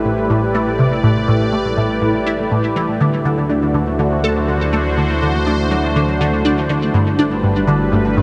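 Drenched in huge, echoing reverb, this brief cut from a longer piece of ambient, sequencer-driven space music moves at 122 BPM in a straight 4/4, with an expansive, mysterious mood over chords of A7(no3), D7 and G6. Up front, a juicy, squelchy blip pluck with phaser, ensemble chorus and delay plays a riff from 0.1 seconds, beside an airy, detuned sawtooth pad with chorus holding sustained chords. Further back, a fingerpicked Celtic harp rings out delayed arpeggios, while a round sine sub bass supplies the low end; both fade in across the whole 8.2 seconds.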